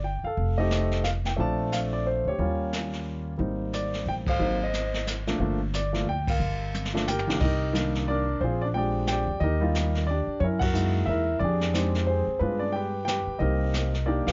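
An intimate grand piano carries the melody up front, its long sustain and audible action noise giving the playing a natural, close-up feel across a range from C2 to A5. This is a swinging, cool jazz piano trio in 3/4 at 180 BPM, cut from a longer piece, with a light swing on the eighth notes. A woody, growly upright bass played pizzicato sits alongside it from the start, and a brushed drum kit joins at 0.4 seconds with dark cymbals, a medium-tuned snare and a boomy kick. The harmony moves through rich jazz chords in G minor. The trio hits accents together several times, and after a drum fill from 6.7 seconds the music shifts to C minor at 7.4 seconds. The overall production is dark and warm with a light reverb and a rolled-off top.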